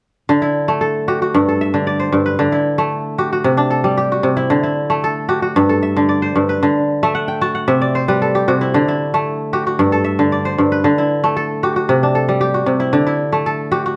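Fingerpicked kora arpeggios ring out crisp and up front from 0.3 s in this hypnotic, joyful West African traditional piece at 114 BPM in D mixolydian, cycling through D, G and C chords and breaking into a fill from 7.0 to 8.7 s, captured by close, detailed microphones within a moderate recital-hall reverb.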